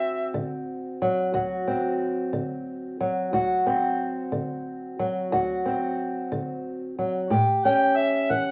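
A slow, straight 12/8 pulse at 60 BPM in dotted quarters carries this soulful, rollicking acoustic country blues excerpt in D mixolydian, moving from D7 to A7 at 7.3 seconds. A dark, woody, boxy fingerpicked ladder-braced acoustic guitar on old strings plays the accompaniment up front for the whole 8.5 seconds. A clear harmonica sounds briefly at the start and returns at 7.6 seconds with a jazz-style solo full of light vibrato, tongue slaps, scooped notes and a soft attack. Both parts carry a cassette-tape character, set in a moderate booth ambience with a touch of studio reverb on a home recording.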